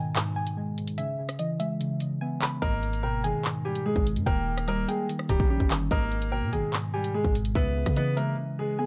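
A dry, close-sounding fragment of ominous, tense half-time drill opens on muted, warbling felt-like synth keys with chorus and a soft, round pluck carrying a second line through chorus and digital delay, while an up-front electronic drum kit of hard-clipped kick, hi-hat, rim click and handclaps arrives at 0.2 seconds. At 2.6 seconds a clear, polished concert grand piano takes the melody as a punchy, heavy 808-style bass with a fast attack enters beneath it. The harmonic-minor chords shift from G# minor through C#m7, G#madd9 and D#7. The drums drop out at 8.3 seconds and the bass at 8.4 seconds, leaving the keys, pluck and piano to ring on briefly.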